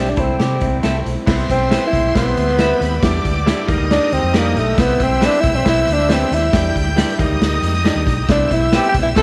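Uptempo 1960s-style soul at 137 BPM in C major, this warm, uplifting cut from a longer piece opens as a warm, fingered amp-driven guitar riff joins the band from 0.2 to 1.2 seconds, then from 1.3 seconds a dark, breathy tenor saxophone solo with scooped notes and tape echo rides up front over a clear, intimate grand piano, twangy, slightly broken-up guitar stabs, a round, foam-muted fingered bass, a punchy raw garage drum kit in a stone room, a smooth bowed violin section, and a shouting, lightly overdriven tonewheel organ turning through a slow rotary speaker, all under light reverb.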